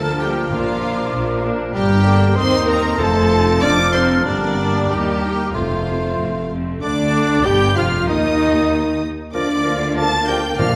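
Rich, focused violins carry the graceful melody of this lively classical-period orchestral passage in 2/4, while a second violin line, pure flute, oboe and vintage-toned clarinet add background lines over mellow bassoon and smooth violas, dark sustained French horns, lush cellos and expressive double basses, with very quiet, round timpani from 0.5 to 6.5 seconds and again at 10.6 seconds, all in a spacious concert hall.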